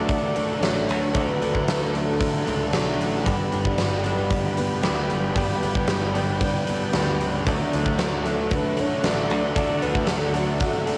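This short rock excerpt, blending shoegaze and dream pop, has the lightly reverberant sound of a home cassette recording, and its mood is dreamy and hazy. A huge arena drum kit sits up front with a punchy kick, fat snare and hi-hat in a pumping hall, while a growly, bright electric bass holds down the low end until it stops at 10.7 seconds. A thick, dark fuzz guitar plays a distorted riff drenched in lush chorus, shadowed in the background by a twangy, clean electric guitar riff with reverse reverb. Behind them, a vintage string machine spreads sustained ensemble chords, and a very quiet, shimmering twelve-string acoustic guitar picks octave-doubled arpeggios. A breathy, flute-like synth lead with vibrato and analog delay sings the melody for the first 3.0 seconds and returns at 8.3 seconds, floating over harmony that moves from D to G and back to D.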